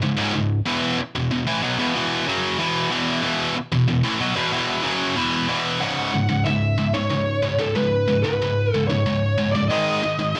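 A bright, scooped, double-tracked high-gain electric guitar opens this heavy, aggressive metal passage, picking a low, distorted riff over C#5 and E5 chords in a straight 4/4 feel. The riff sits up front and keeps driving through the whole fragment, which is cut from a longer piece. At 5.8 seconds a second section begins as a darker high-gain lead guitar enters above it, picking a distorted melody with a short slapback echo that clings to its notes. The harmony returns to C#5 there and moves to G#5 near 9.7 seconds, with the lead sitting a little lower in the mix than the riff. The whole thing has the dry, close feel of a 1970s-style studio room touched by a digital ambience, giving the guitars a tight, in-your-face presence.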